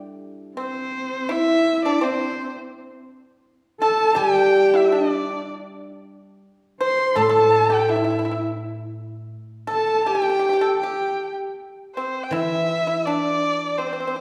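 The erhu carries the melody, up front and focused, its bowed line warm with vibrato, portamento and a smooth top, entering at 0.6 seconds and running to the end. This is pastoral, graceful Chinese traditional chamber music at 82 BPM in 2/4, played rubato in the G zhi mode and cut from a longer work. Beneath it, the horsehead fiddle adds a rich, husky second line with a soft attack, vibrato and expressive portamento until 11.3 seconds. The pipa, mellow, dry and percussive under fingerpicks, keeps another second line going. The guzheng, silvery, ringing and also up front, supplies accompaniment in separate stretches, while a very quiet, fingerpicked Celtic harp is heard only in the opening 0.9 seconds. The ensemble sits further back in a recital hall, wrapped in a wet reverb.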